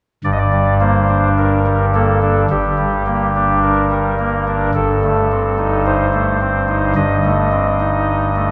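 A chamber organ's soft reed voice, an oboe solo stop with a chiff and a trembling tremulant, carries this dark, solemn classical chorale alone from 0.2 to 8.5 seconds, shifting from G minor to a diminished chord over a G bass, heard from further back in a church whose lingering reverb surrounds the fragment cut from a longer piece.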